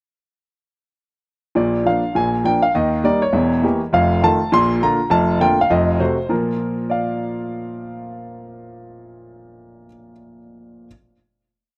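Playful and swinging, this short stride piano piece in Bb major at a brisk 203 BPM features a clear, up-front concert grand with a deep stride bass beneath a smooth single-line melody, given a vintage slapback echo and a dry open-air sound, as it moves from 1.6 s through Bb, Eb, Edim7 and F7 changes to a final Bb chord at 6.3 s that rings until 10.9 s.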